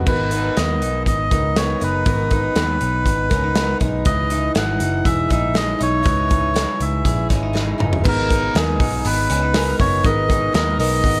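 A reedy, breathy melodica carries the tune up front with tape echo, singing over a youthful, nostalgic slice of jangly indie pop at 120 BPM in a straight 4/4. Beneath it, a picked twelve-string acoustic guitar shimmers with octave-doubled, woody strings bathed in plate reverb, while a twangy, slightly broken-up electric guitar through a small old amp picks arpeggios with its own tape echo. A dark, round, foam-muted electric bass holds the low end, and a punchy modern studio drum kit with a medium-tuned snare pumps in its room, using kick, snare, hi-hat, toms and crash. The harmony moves from G#madd9 to C#madd9 at 4.1 seconds. A drum fill at 7.6 seconds leads into a new section at 8.1 seconds, and a very quiet upright piano with long sustain joins the accompaniment at 8.0 seconds. The whole mix sits in light reverb, and the passage is cut from a longer piece.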